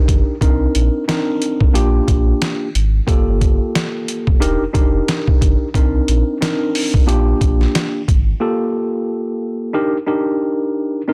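Dark and tough, this boom-bap hip-hop excerpt sets a worn, slightly out-of-tune tine electric piano up front, its cassette-tape colour and filtering giving the Cm9, Bb6, Gm9 and Ebmaj7 chords a mellow, faded glow over a swung groove. A gritty, pitched-down sampler-style drum kit with a thumpy kick and a medium-tuned snare sits prominently beside a deep, sustained sine sub bass doubled at the octave. The drums and bass drop out at 8.3 seconds, leaving the electric piano alone until 11.1 seconds in a dry, dense and heavily limited mix.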